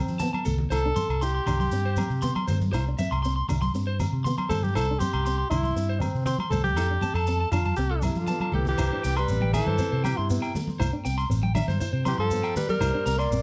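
Highlife guitar band music at 119 BPM in C major, carefree and danceable, where a breathy, subtoned alto saxophone sings the melody up front over a round, dark fingered electric bass, a slightly broken-up electric guitar spinning compressed arpeggios, a fingerpicked steel-string acoustic guitar with fresh strings and finger squeak in the background, thick-skinned damped congas, a grainy distant shekere and ringing agogo bells. Drum fills arrive at 0.3 and 8.2 seconds, and a clear, punchy tenor saxophone adds a forceful second line from 8.1 seconds, all in a moderate studio ambience.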